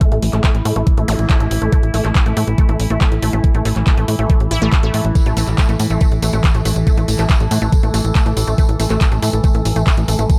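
A psychedelic trance passage cut from a longer piece opens at once on a knocking, tape-warm electronic kick set up front, beneath a tight, punchy sequencer bass of sawtooth and square-wave tones with a ring-modulated filter pluck that drives the straight pulse. Above them, a lush, detuned unison pluck plays a bright, wave-folded riff with sidechain pumping and delay, while an evolving, resonant drone of moving overtones holds sustained chords through chorus, its own reverb and a pumping sidechain. A layered electronic drum kit adds handclaps and bright hi-hats with a small-room character, and a filter sweep runs across a synth arpeggio sound from start to finish. A very quiet electronic zap flickers past at 1.1 seconds, and a jingly, close acoustic tambourine joins at 5.2 seconds. The dark, digital ambience gives the whole stretch a psychedelic, alien mood.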